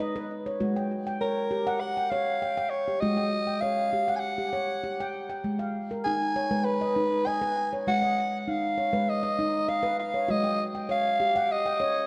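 Meditative and gentle, this short excerpt from a longer piece drifts at 99 BPM in a straight 4/4, tuned to A4 = 439 Hz. A handpan plays ringing arpeggios from G#3 to G5 throughout, its nitrided steel struck with soft fingertips for a mellow, warm tone, sitting up front with a touch of delay. Over it, a growling soprano saxophone carries the solo melody between A#4 and G#5 in a jazz style, its breathy subtone sound raspy and gritty, with a light vibrato, a soft attack and a smooth top, also treated with delay. The harmony rests on G#m, moving to F#5/G# at 0.6 seconds, back to G#m at 5.4 seconds and to F#5/G# again at 10.3 seconds. Both parts bloom in the reverb of a recital hall, giving the twelve seconds a spacious, contemplative air.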